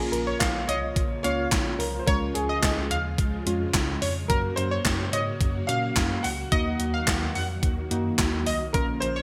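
Synth-pop with a nocturnal, melancholic mood, this excerpt from a longer piece sets a smooth, vintage grand piano melody, bathed in lush chorus and delay, over dark, intimate felt-like synth keys and a mellow tine electric piano carrying the bass. A thumpy, up-front 80s drum machine drives the groove with handclaps, hi-hat, kick and a gated-reverb snare, while a punchy, funky polysynth comp with chorus and delay adds a second line from 0.3 s. Background string-machine cellos hold full, sustained chords through an ensemble chorus, and a moderate plate reverb glues the bright 1980s-style digital production as the chords move from Bbm through Db and Gb to Ebm.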